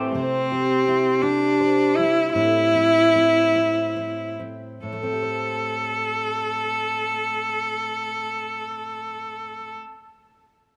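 This acoustic folk-pop ballad in 3/4 has an intimate, reflective mood and is cut from a longer piece. A fingerpicked steel-string dreadnought guitar carries the accompaniment from the very start, its full-bodied tone sitting behind the melody with the occasional finger squeak audible. A single bowed cello enters at 0.2 seconds and takes the melody up front, clear, smooth and even, with vibrato. The harmony moves from Cadd9 to Am7, and the pace slows through the opening stretch before a new section begins at 4.8 seconds. A moderate plate reverb gives the performance a soft halo of space.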